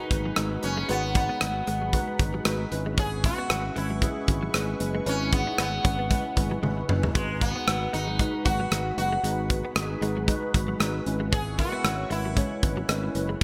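A buzzing, shimmering sitar carries the melody through delay in this moody, nostalgic excerpt of 1980s-style pop in G# minor at 115 BPM, lightly swung over a G#m7 to C#m7 progression. Glassy, detuned digital keys with chorus sit beside it, while a lush, thick unison pad with chorus and phaser hangs in the background and a very quiet, clean, direct-recorded electric guitar riff enters at 0.3 seconds. A growly fretless bass and an up-front drum kit with a tight kick and gated reverb drive the bright, plate-reverb-washed production, with a drum fill from 6.6 to 7.2 seconds.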